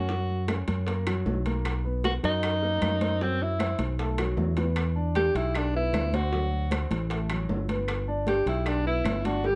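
A straight, danceable 4/4 Afro-Cuban jazz groove of damped high-tuned congas, tight bongos, woody claves and ringing metal-shell timbales, with a drum fill at 4.2 seconds, carries this sunny excerpt, where a clear alto saxophone with light vibrato and scooped notes leads up front over a growly, punchy fingered electric bass and a natural-sounding grand piano, heard from further back in a moderate studio reverb.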